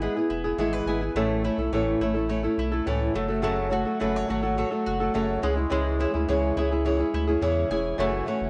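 The flamenco guitar, mandolin arpeggios and a saturated sub bass all sound together from the start of this short pop excerpt in F# minor, moving at 105 BPM in a straight 4/4 with a tender, wistful mood. Up front, the fingerpicked flamenco guitar rings with fresh strings and audible finger squeak, while the round, double-strung mandolin sits quieter in the mix and the deep, thick sub bass adds a fast-attack, sustained weight. Light reverb and a worn cassette-tape warble with pitch drift color the sound as the chords move from E through A, F#m and C#m to land on F#m7 at 8.0 seconds.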